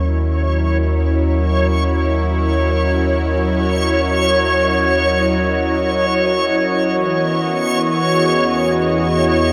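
Serene and peaceful, this free-time ambient excerpt, tuned to A4 = 437 Hz, pairs a smooth, chorused analog pad sustaining chords from D#m7 to Emaj7 at 6.9 seconds with a deep, rumbling, ominous bass drone, a reversed, granular, dreamy swelling texture with shimmer reverb up front, and a bright, string-like bowed drone with vibrato in the background, as the pad and drone fade in across all 9.5 seconds inside a cathedral-like reverb.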